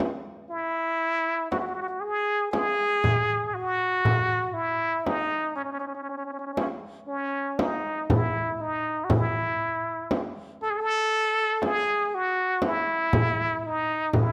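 A brilliant, forceful plunger-muted trumpet with wah-wah and vibrato leads up front in a punchy, jazz-style solo from 0.5 seconds, over a crisp, distant metal-shelled darbuka played with soft hands and a warm, close, dry frame drum struck with hard hands, giving this festive, stately Arabic maqam ensemble piece in 10/8 a detailed sound within a moderate recital hall reverb.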